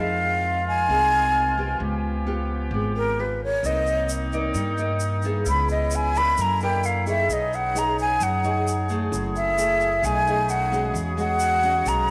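A breathy jazz flute carries the melody up front for the whole excerpt, its soft attack, vibrato and lifted highs trailed by tape echo in this sophisticated, romantic bossa nova at 131 BPM in a straight 4/4. A fingerpicked nylon-string guitar and a distant, roomy woodwind section holding sustained chords support it over a woody, growly upright bass, while a grainy, close tube shaker joins at 3.6 seconds. Chords such as Fm7, Db7#11, Cm9 and E69 drift through rich extended colours, and a moderate echo chamber reverb lends the mix its sense of space.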